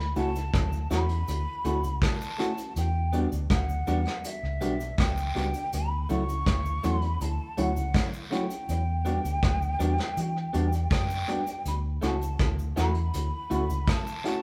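Romantic and tender, this lovers rock reggae groove sways gently between Dmaj7 and Em7. A breathy, hollow jazz flute carries the melody from a distance over a dark, round, foam-muted electric bass and a lo-fi, muffled brush drum kit with punchy kick, hi-hat and rim click, both sitting up front. A worn, barky tine electric piano, slightly out of tune and trailed by tape echo, fills in the harmony, while an electric guitar through a small old amp adds slightly broken-up, compressed stabs and a close cabasa and guiro tick along low in the mix, all captured live in one large studio with moderate reverb.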